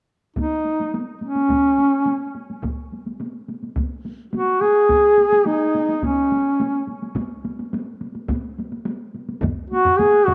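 From 0.4 seconds, a dark duduk and a taiko drum ensemble begin together in this ceremonial, driving cut from a longer Japanese traditional piece in straight 4/4. The duduk carries the melody up front as a folk-style solo, with a soft attack, vibrato, scooped notes and a smooth top, moving between Db4 and Ab4. Beneath it, the taiko ensemble plays in layers: one struck with hard sticks sounds out in a live room, while another, played with heavy sticks, sits close and dry. Near 9.4 seconds, a further close, dry layer of heavy-stick taiko takes over from the second, running to the end at 10.3 seconds. A wet spring reverb lends the recording a long, resonant tail.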